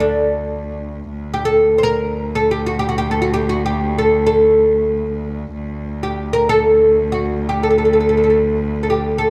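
In free time, this brief cut from a longer Arabic maqam ensemble piece unfolds in D maqam hijaz, tuned to A4 = 439 Hz, with a melancholic, longing mood. Up front, a fretless oud carries the melody between D4 and C5, its plectrum-plucked double strings sounding bright and woody, while a single close, focused cello bows a rich D2 drone with vibrato beneath it for the full 9.3 seconds. A moderate recital hall reverb and a dark production give the pair a sense of space.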